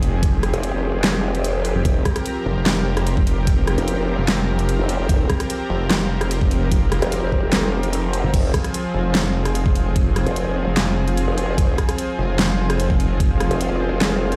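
A growling, formant-filtered bass sits up front from 0.5 seconds, and alongside it a snarling, detuned sawtooth bass with a moving notch churns on F1 to G1, both saturated and aggressive, in this heavy, chaotic stretch of wobble dubstep at 148 BPM in a half-time feel over F minor. An overdriven, knocking electronic kick and a layered dubstep kit with a huge snare, handclaps, rim clicks, hi-hat and crash drive the groove. A lush, warbling vintage pad holds an Fmadd9 chord with slow attack and sidechain pumping, all in a stone-room reverb like a big sound system in a bare room.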